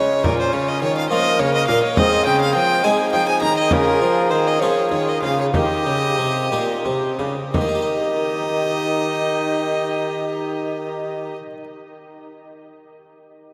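The recording sits in a vast, echoing space, its huge wet reverb lending a cathedral-like haze to this short cut from a longer piece. It is a courtly, festive Renaissance-style consort dance in a straight 6/8, moving at a stately 57-70 BPM in Eb mixolydian, and it slows between 2.8 and 7.5 seconds. A breathy tenor recorder carries the melody from 0.2 seconds, its wooden tone marked by chiff, a crisp attack and vibrato. A nasal, gut-strung violin plays a second line up front with an airy bow, while a dry, close-miked harpsichord gives round, plucked accompaniment. Two bassoons fill the lower register, one distant and roomy in the background and the other clear, with light vibrato and a soft attack, anchoring the bass. A deep frame drum, played with soft hands, adds dry percussion until 7.9 seconds, as the harmony moves through Bbm, Ab, Db and Eb.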